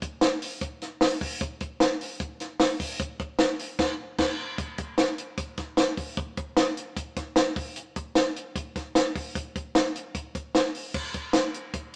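A straight, even four-beat pulse drives this short indie pop drum passage, carried by kick, snare, hi-hat and crash cymbal. The mood is youthful and breezy, and the compact cocktail kit plays from the start at 0.0 seconds to the close at 12.0 seconds. Its acoustic, natural sound sits up front, with a tight kick, a high-tuned snare and dark cymbals giving it a crisp yet mellow character. A band accent lands between 3.8 and 4.6 seconds before the passage moves into a new section, followed by another brief change near the end. The dry kit is set in a moderate stone room, heard as a live performance through a small speaker, which lends the clip a boxy, intimate feel.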